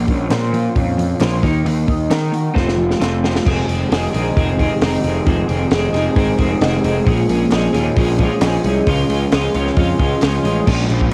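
A straight 4/4 pulse at 133 BPM drives this short cut from a longer indie rock piece, cool and restless in mood, with a compact cocktail drum kit sitting up front, its punchy kick, high-tuned snare and dark cymbals sounding dry. A fuzz-picked electric bass, overdriven and punchy, anchors the low end from F1 to Eb3 and sits forward in the mix. Two twangy guitar riffs run from the start: an electric guitar through a small old amp, slightly broken-up with analog chorus and delay, and a clean, compressed twelve-string electric guitar shimmering with harmonic tremolo. Hollow group handclaps sit in the background from 0.3 to 3.1 seconds and return at 7.5 seconds. The opening passage moves through Bbmadd9, Ebm and F before a drum fill at 2.6 seconds leads into a second passage on Fm7, Bbm7 and Db, all captured as a home recording on cassette with little reverb and a tape-worn character.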